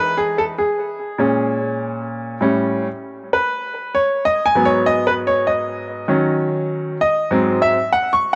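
Hip hop with a nocturnal, cool mood: a brief fragment of solo upright piano, swung on the sixteenths and tuned slightly low at A4 = 439 Hz, moving through seventh chords from Emaj7 through A#m7 and A7 to G#m7, D#m7 and G#7. The piano spans a broad range from G#2 to C#6 and sits up front, brilliant and woody with a short sustain. It is coloured by cassette tape and analog delay and placed in a small, lightly reverberant room that gives it the feel of a home recording.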